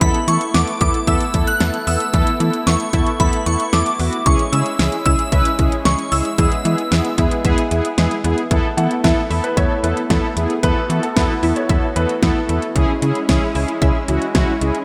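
Bright and wistful, this excerpt of 1980s-style synth-pop in E major moves at 113 BPM in a straight 4/4, with a punchy, up-front electronic drum kit and a snappy slap-like FM bass under a mellow, brassy synth accompaniment, a thick, nasal unison pad in the background and a very quiet, squelchy blip pluck playing arpeggios, while a shimmering, dreamy bell with ensemble chorus and delay carries the melody until 7.1 seconds and a polished grand piano with delay adds a second line from 8.8 to 12.1 seconds, all set in a lush digital hall reverb over chords moving from Esus4 through C#m to E.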